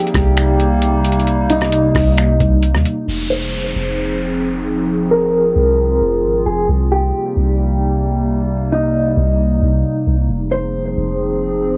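A mellow, dark electric guitar carries the melody throughout this hazy, spacious cloud-rap excerpt, its clean, fingered tone shaded by tremolo, a low-pass filter, analog delay and a cassette-tape grain. Beneath it, a warbling tape-like pad holds sustained chords with a nostalgic, detuned, vintage character, softened by chorus, its own reverb, a low-pass filter and sidechain pumping. A soft, round 808-style bass sits up front, deep and sine-like with a fast attack that decays into darkness. The muffled, pitched-down sampler-style drum kit, with finger snaps, hi-hat, rim click and a thumpy kick, plays only until 3.0 seconds, after which an electronic downlifter passes through the mix and a filter sweep runs to the end. Set at 133 BPM in a half-time 4/4 feel in F minor, the harmony moves between Cm7 and Fm7, and the whole has a light-reverb, home-cassette sound.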